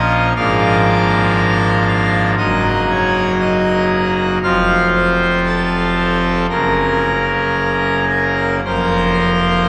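In a free, rubato 4/4, this grave and solemn classical chorale unfolds as a short cut from a longer piece, played by a solo pipe organ on full organ with mixtures drawn. The majestic, brilliant sound has a romantic voicing and sits up front, spanning the deep bass at F1 to the bright upper register at F5 as the harmony moves from Bb7/Ab through Ebm/Gb, F and Gb before arriving on Fsus4 at 8.6 seconds. A wet cathedral reverb, with a 4.7-second decay, gives the chords a vast, church-like halo.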